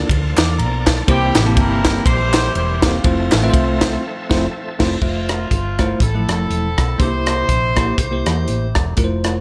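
Gritty, up-front fusion drums with a high-tuned snare and tight kick drive this jubilant, uplifting uptempo gospel excerpt, swung in 4/4, alongside a dark, round hollow-body electric bass and a bell-like tine electric piano that play throughout. A shouting tonewheel organ with slow rotary speaker, light overdrive and chorus vibrato sits in the background, opening with a fill before it stops at 5.0 seconds, while very quiet, close handclaps join briefly and a punchy, distant horn section carries the melody from 1.1 seconds. A band accent just before the organ drops out marks the turn into the second half, and light reverb surrounds the band.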